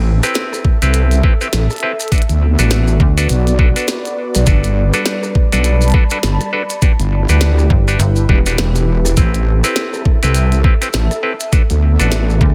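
A swung sixteenth-note groove in 4/4 drives this playful, funky glitch hop excerpt, anchored by a knocking, tape-warm electronic kick up front and a glitchy kit of clicky hats, rim clicks and a tiny snare that sounds re-recorded in a large room, with grainy maracas tucked in the background. A heavy, saturated wobble bass with chorus sits beside a snappy, metallic FM slap bass that jumps in briefly around 3.0 and 7.7 seconds. Above them a nasal clav plays stabs through a combo amp with delay and sidechain pumping, while an airy, breathy pad with chorus and its own pumping drifts over a chord cycle of Am7, Bm7, Gmaj7 and Em7 in a digital ambience.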